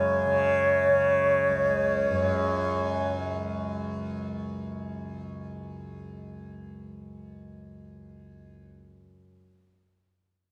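Bathed in a reverberant recital-hall ambience, this solemn, meditative fragment of Hindustani classical music opens with a close-miked, hollow and airy bamboo bansuri singing a vibrato-laced melody with a crisp attack until 3.2 seconds, over a softly plucked, buzzing tanpura drone that shimmers up front and sustains alone until 9.3 seconds.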